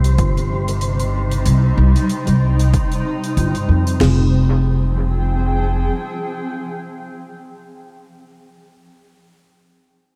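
A lightly swung 4/4 groove is set by an overdriven deep house drum kit with a punchy kick, fat snare, toms and crash, entering at 0.2 s, over a faint, big-room acoustic hi-hat in this spacious, meditative slice of ambient dub cut from a longer piece. A woody, thumpy pizzicato upright bass sits up front beneath a cloudy, evolving granular pad and an airy, breathy wind-like noise texture, with both of those washed in their own reverb as the harmony moves from Cm7 to Fm at 4.0 s. In the background, a muted, detuned dub chord stab with chorus and dub echo drifts on until 7.8 s, all set in a light digital ambience.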